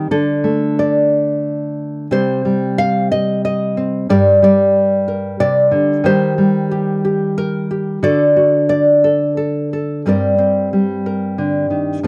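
In a rubato 3/4 at 91 BPM, this intimate, wistful folk fragment in G minor, cut from a longer piece, features a dark, fingerpicked nylon-string guitar playing solo and up front in a close, dry 1970s-style studio sound with light reverb, finger squeaks audible as it moves through Cm, Gm, Eb and D before settling back on Gm at 10.0 seconds.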